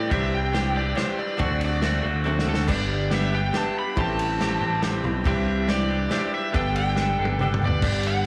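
A straight 3/4 pulse at 140 BPM drives this hopeful folk rock and heartland rock excerpt in G major, heard live through a club PA with light reverb. An overdriven slide guitar played with fingerpicks carries a solo until 7.8 seconds over a bright, twangy twelve-string electric riff, a shimmering, octave-doubled twelve-string acoustic in the background, a gritty reed electric piano with fast tremolo, and a punchy, up-front picked bass. A loose indie drum kit with dark cymbals keeps time and adds fills at 2.3 and 7.0 seconds, as the chords move from Cadd9 through D7, G and Am7 to Gadd9.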